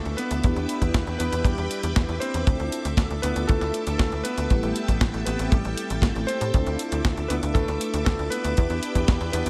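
A warm electric grand piano carries the melody in D dorian through a tape echo, over lush string-machine chords with ensemble chorus and a touch of 12-bit grit, dark detuned synth-brass stabs, and a nasal, punchy sequencer bass, all sounding from the first moment of this danceable, melodramatic italo disco excerpt at 118 BPM. The clean 12-bit drum machine adds hi-hat and a medium-tuned snare washed in gated reverb from 0.1 seconds, and a dry, tight acoustic kick sits up front from 0.4 seconds. The chords move from Em7 through Dmadd9 and Am7, set in light digital ambience.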